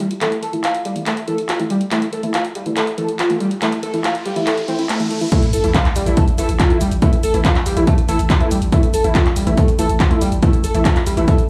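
Driving peak-time techno at 141 BPM, relentless and intense, opens with a gritty, screaming overdriven synth lead riff under a filter sweep, thick detuned rave stabs, and a punchy analog drum machine of hi-hat, shaker, handclaps and crash, while a riser and sub drop build in the background from 3.1 seconds until the drop at 5.3 seconds brings in an up-front electronic kick and a growling, buzzy 808-style bass, with the lead, stabs, drum machine and bass pumping with sidechain under a moderate stone room reverb.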